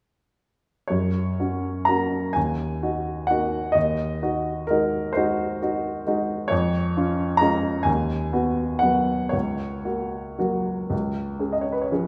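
A warm baby grand piano sits present and up front, playing alone from 0.9 to 12.1 seconds in this short passage cut from a longer romantic nocturne. The mood is serene and nostalgic, unfolding in F# major at a slow 37-45 BPM in 12/8, with a free rubato feel that lets the pulse breathe. The piano spans from C#2 up to A#5, moving through a gentle harmonic path that begins on F#, passes through D# minor and a G#7 over D#, and reaches C# by 10.9 seconds. Around it, a lush recital hall reverb with a 1.6-second decay gives the sound the spacious bloom of a church or concert hall.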